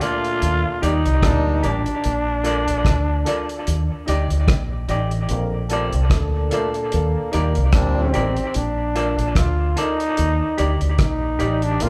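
A growling solo trombone, raspy and gritty with vibrato, carries the melody up front in this sunny, warm roots reggae excerpt, set over a lightly swung 4/4 pulse. Behind it, a close-miked trombone section plays a warm second line, while a clean, hollow-bodied semi-hollow electric guitar adds accompaniment colored by tremolo and tape echo. A dark baby grand piano, very quiet and intimate with audible action noise and short sustain, drops in brief stabs. The cloth-damped drum kit sounds dry and thuddy, with a tight kick, hi-hat and rim click sitting up front, and a deep, round dub bass joins at 0.4 seconds, punchy and prominent. The band plays live together in a large studio with moderate reverb, cycling between Ebmaj7 and Bbmaj7 throughout.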